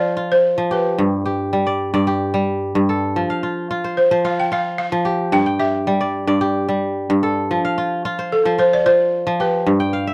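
West African traditional music, warm and hypnotic, in which a woody, buzzing balafon struck with rubber mallets carries the melody up front while a bright, ringing, fingerpicked kora spins arpeggios alongside it across the whole brief cut from a longer piece, closing with a short kora fill at 9.8 seconds, all captured in a dry, close 1970s-style studio sound.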